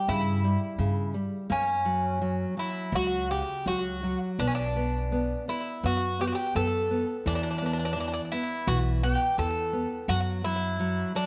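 Light studio reverb gives this short section of a longer piece an intimate, close feel, with the Greek bouzouki set up front. It is a mournful, longing fado-style ballad in B minor, moving at 84 BPM in 4/4 but played with a loose, rubato feel and tuned slightly under concert pitch to A4 = 439 Hz. The bouzouki carries the melody from 0.0 seconds with a bright, metallic picked tone, its double strings, some octave-doubled, ringing through a slapback echo. Beneath it, a nylon-string guitar fingerpicks a full-bodied, deep classical accompaniment, with the occasional finger squeak. A pizzicato upright bass with steel strings adds a woody low end from 0.1 seconds until 11.0 seconds. The harmony moves from C#dim through F#, Bm and E5 before settling on a rootless Dadd9/F#.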